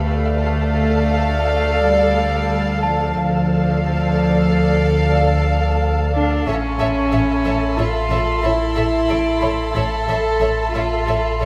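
In a straight 5/4 at 91 BPM, this ominous, mysterious suspense cue moves from Dm to A as sul tasto strings hold the field: violins carry the melody and a second line over a background viola, an up-front cello section and woody double basses join a deep sine sub bass drone, while distant mellow French horns and a grainy, flickering granular texture sustain chords, a slightly out-of-tune vintage celesta adds bell-like glints from 2.8 s, and high floating violins enter at 6.5 s, all within a moderate scoring-stage reverb in this excerpt.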